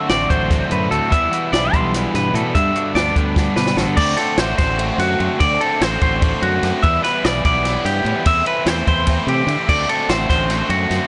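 In a straight 7/8 at 294 BPM (eighths), this intricate, wistful math rock and midwest emo fragment pairs up-front, twangy clean electric guitar arpeggios with spring reverb with a double-tracked crunchy overdriven guitar riff, a growly fingered electric bass and a dry cocktail drum kit with dark cymbals, a high-tuned snare and punchy kick, while a compressed, phased twelve-string electric guitar accompanies only until a drum fill at 3.4 seconds leads into the second section at 4.0 seconds, all through a blown-out, overdriven recording with light reverb and dulled top end over chords moving from D7 through Em11 and Gmaj9 to Em7 and Am7/E.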